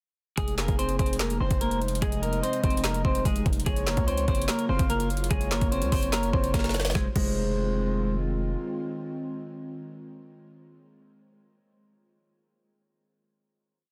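Dark, melancholic half-time trap at 146 BPM in F phrygian, where a clean, fingered electric guitar loop doubled in octaves, washed in lush chorus and digital delay, floats alongside a breathy flute-like synth counter-melody, a warbling lo-fi tape-like pad, a distorted, heavy 808-style bass with pitch slides, and an up-front trap kit of knocking kick, woody snare layered with clap, and metallic sixteenth-note hats with fast rolls, all moving from Fm7 to Gbmaj7 before a drum fill at 6.5 seconds leads into a final Fm7 chord that the pad sustains until 10.9 seconds in a dense, heavily limited mix.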